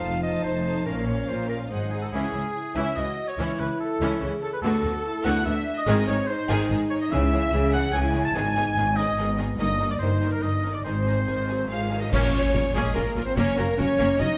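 Heard in a moderate scoring-stage reverb, this swashbuckling, heroic film-score excerpt in 3/4 sets rich, lush violins on the melody over a soft-edged second violin line, intense violas, expressive cellos, even double basses and tight French horn chords, while a punchy clarinet, a hollow, very quiet flute group and a warm oboe add second lines; dark cymbal swells, clash cymbals and bass drum arrive at 9.6 s, and a close, dry concert snare joins for a band accent at 12.1 s.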